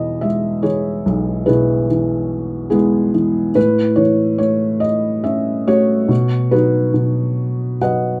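A close, boxy piano sound with light reverb and audible action noise marks this 8.2-second cut from a longer classical piece. A felt-muted upright piano plays alone, tender and lyrical, in E major at 71 BPM in a rubato 3/4, spanning B1 to F#5 with a dark, mellow, intimate tone. The harmony moves from E to A at 3.6 seconds and then to B at 6.1 seconds.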